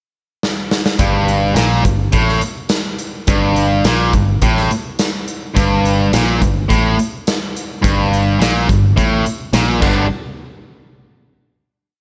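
A big acoustic rock kit opens with a fill at 0.4 s before this short, driving, swaggering classic rock piece in G minor at 105 BPM kicks in at 1.0 s, where a bright, overdriven, double-tracked electric guitar riff and a warm fingered bass doubling it in eighth notes ride over a punchy kick, medium-tuned snare, hi-hat, crash and tambourine playing a 60s soul groove with a stone-room sound, all dry and up front, before the harmony turns to G major at 9.8 s and everything lands on a final hit at 10.1 s.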